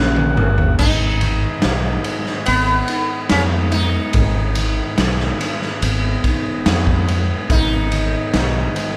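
Recorded live in one room with light reverb, this mysterious, trippy psychedelic rock piece opens on a drum fill from a gritty, saturated garage kit, with a very quiet, reedy harmonium drone that stops at 0.9 s, as a growly fingered bass, a dark phaser-treated electric guitar riff and a buzzy, overdriven combo organ holding sustained chords in the background carry the groove, and a shimmering, buzzing sitar melody enters at 0.8 s.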